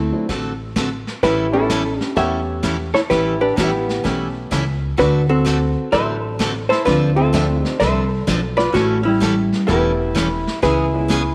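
Swinging and cheerful, this western swing country clip has a clean, compressed hollow-body jazz guitar carrying the melody up front over a second line from a miked archtop guitar, with woody, thumpy gut-string pizzicato upright bass, a bright, full-bodied picked steel-string acoustic guitar, a mellow upright piano tucked in the background, and a smooth vintage brush kit with a punchy kick, all in a light studio reverb.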